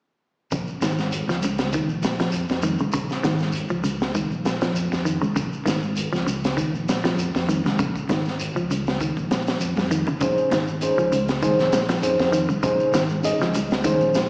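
Afrobeat at 99 BPM in Bb minor, this intense, hypnotic excerpt rides a lightly swung sixteenth-note feel over a single Bbm11 chord. A crunchy breakbeat kit sits up front with a tight kick, high-tuned snare and hi-hat, its saturated, gritty tone dark with a rolled-off top. Beneath it a fingered electric bass holds the low end with a round, amped sound, while a clean, hollow-body semi-hollow guitar fingers dark arpeggios touched with slapback echo. Grainy shekere fills in the percussion alongside bright, thin-skinned congas played with soft hands in the background, both carrying slapback echo as well. After a drum fill at 9.8 seconds, a reedy electric piano enters at 10.2 seconds, up front with fast tremolo through its built-in speakers. The whole performance comes across like a live gig heard through a venue's PA, with recital hall reverb and a small speaker character.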